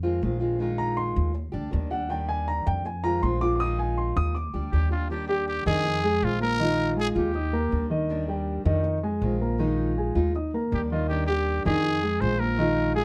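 A dark production with light reverb frames this relaxed Latin excerpt, where a boxy fingerpicked steel-string acoustic guitar and a woody, thumpy pizzicato upright bass accompany mellow, long-sustaining baby grand piano arpeggios that enter at 0.8 seconds, before a raspy, growling trumpet with light vibrato takes the melody up front from 4.7 seconds.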